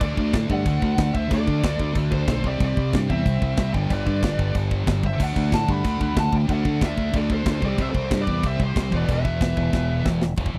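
Up-front metal drums with bright china and crash cymbals, a tight kick and a medium-tuned snare lead this heavy, epic metal excerpt beside a growling, overdriven fingered bass, while a scooped high-gain guitar and a sludgy, warm overdriven guitar play the riff in the background beneath a dark, distorted lead melody with tape echo and a quieter second lead line, captured in a dry, close 1970s-style studio sound and capped by a drum fill at 9.7 s.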